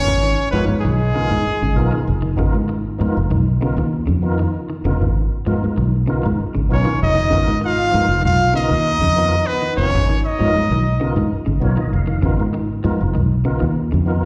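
A straight 4/4 afrobeat groove at 98 BPM drives this defiant excerpt in G# dorian, built on a single G#m69 chord. A round, foam-muted fingered electric bass sits up front and anchors the pulse, while a clean, picked electric guitar plays bright arpeggios. A fat tonewheel organ, lightly overdriven with key click, chorus vibrato and a slow rotary speaker, holds the accompaniment throughout and adds a short fill at 11.3 seconds. A brilliant trumpet carries the melody with light vibrato and scooped notes, paired with a raspy, growling trombone on a second line. The horns state their line at the opening, drop out at 2.0 seconds, and return at 6.7 seconds, both horns and the organ and guitar carrying a slapback echo. The sound is of a live gig heard through the venue's PA, with small-room ambience and a recital-hall reverb around the band.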